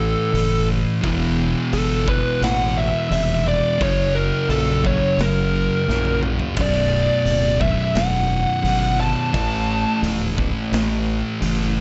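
A dark, fuzzed-out lead guitar sits up front in this heavy, brooding stoner and doom metal excerpt, its distorted melody ringing with slapback echo over a steady 87 BPM in B minor before it drops out at 10.0 seconds. Behind it, two thick, picked fuzz guitars grind out the riff in the background, with a growling, punchy fingered bass adding overdriven weight through chords moving from A5 and Em to F#, Bm and A. A big acoustic rock kit with a boomy kick and medium-tuned snare drives the groove, playing a drum fill at 5.9 seconds, all set in light reverb with a muffled top end.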